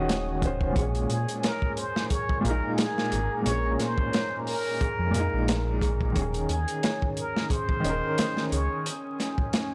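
A crunchy breakbeat kit sets a lightly swung 16th-note groove at 89 BPM in 4/4, its tight kick, medium-tuned snare and hi-hat sitting up front with a saturated, gritty edge and a rolled-off top. This smoky, cinematic trip hop fragment in Bb minor rests on a dark detuned saw bass that rumbles and beats through tube saturation, while an upright piano lays down woody, long-sustained accompaniment coloured by tremolo, tape echo and vintage 12-bit sampler grit. Behind them, a deep ambient pad holds moody, chorused chords with a slow attack, and a worn celesta spins delicate, slightly out-of-tune bell-like arpeggios through dub echo. At 1.1 seconds a plunger-muted trumpet enters with a breathy, whispered jazz-style solo, distant and roomy, its wah-wah tone trailing dub echo. The harmony moves from Eb7sus4 to Bbm7 and returns to Eb7sus4 at 6.2 seconds, all set in a dry hardware recording with transformer saturation, vinyl crackle and studio reverb.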